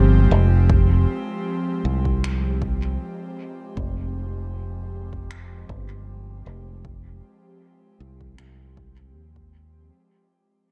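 A punchy, layered electronic kick sets a lightly swung 4/4 pulse from 0.7 seconds, joined at 2.2 seconds by faint big-room finger snaps trailing dub echo, while a round, dark fingered electric bass sits up front underneath. This deep, spacious ambient dub fragment rests on a single Fmadd9 chord held by an airy, breathy pad with a soft detuned tone, slow attack, long release and chorus. The echo-heavy mix carries light reverb and fades out across its length.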